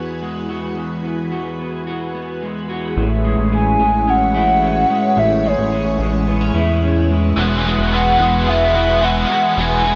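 A hollow, woody clarinet-like synth lead with vibrato carries the melody from 3.5 seconds in this blissful, ethereal dream pop excerpt in A major at 109 BPM, drifting over a phased, organ-like ensemble string pad and a dark, slightly broken-up electric guitar playing arpeggios, joined by a glossy chorused synth bass at 3.0 seconds and a bright, overdriven semi-hollow guitar with tremolo at 7.4 seconds, all set in a moderate plate reverb as the chords move from Eadd9 to Amaj7 and back.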